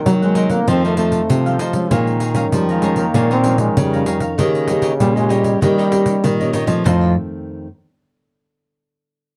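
A breathy, whispered trombone second line and a bright, fingerpicked nylon-string guitar with audible finger squeak open this nostalgic, lively samba-and-choro fragment, joined at once by a punchy, close-miked jazz trombone melody with light vibrato, a thumb-plucked nylon-string bass line in the background, jingly dry pandeiro and crisp picked cavaquinho, within a dark production with light reverb as the harmony moves from Cm7b5 through F7, Bbm7 and Eb7 before arriving back on F7 at 6.9 seconds.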